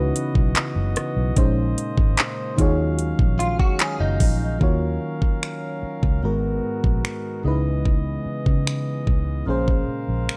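Up front, a knocking electronic R&B kit of finger snaps, handclaps, metallic hi-hat, kick and rim click drives this longing, sensual contemporary R&B cut, over a dark, round, foam-muted electric bass, a soft chorused FM electric piano, a chamber organ's smooth principal chords with a touch of chiff, and a bright, clean, direct-recorded guitar that plays brief arpeggios from 3.4 to 4.6 seconds as the minor eleventh chords give way to minor ninths, all in a dry, gritty recording.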